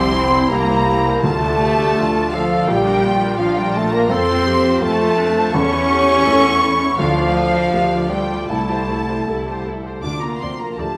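A sorrowful, moving cinematic passage in D minor at a rubato 82 BPM opens with a warm violin section carrying the melody over a felt-muted upright piano, dark up-front French horn chords, a pure flute section, a distant mellow clarinet, a second violin line, an expressive viola section with portamento, rich cellos, bowed double basses and a ringing, very quiet concert harp in arpeggios, while close, dry timpani with hard mallets strike at 1.2 and 7.0 seconds, all held in a wet scoring-stage reverb.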